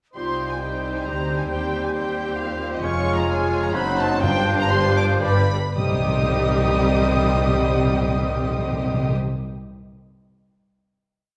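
Urgent and stormy, this short, complete classical-period movement for symphony orchestra moves in a quick 3/4 in C minor, pushed and pulled with rubato and slowing down between 2.2 and 5.8 seconds before settling on a final C minor chord. A rich chamber violin section carries the melody with focused vibrato and a smooth top, while a second violin section and a studio viola section fill in behind it with sustained chords in the rhythm of the tune. Low strings anchor the bass: a very quiet, distant cello section sustains the line with passing notes, and a smooth, even double bass section doubles it. Among the winds, an airy, hollow flute, a distant, roomy oboe, a very quiet clarinet and a background bassoon hold sustained chords, and a mellow French horn section adds a counter-melody. Timpani with medium mallets on calf heads enter at 4.2 seconds, striking single strokes on the bass notes from the G7 harmony that leads home through the final chord. 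The whole ensemble sits in a wet recital-hall reverb that lends the sound a spacious, resonant glow.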